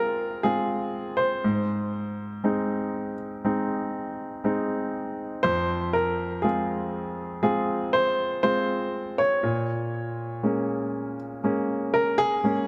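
Two pianos sound together from the opening moment of this slow pop ballad fragment in F minor, set at 60 BPM in a straight 4/4. A baby grand carries the melody in a narrow band from Ab4 to Db5, its tone intimate and natural, with the clatter of its action audible up close. Beneath it, a concert grand supplies the accompaniment from F2 to F4, polished and present with a deep bass, and both instruments keep a short sustain and sit near the listener. The harmony moves from Fm over Ab to Ab at 1.4 seconds, then to Fm at 5.4 seconds and Bbm7 at 9.4 seconds. A lush hall reverb surrounds the pair, lending the heartbroken, longing mood a spacious glow through to the cut at 12.7 seconds.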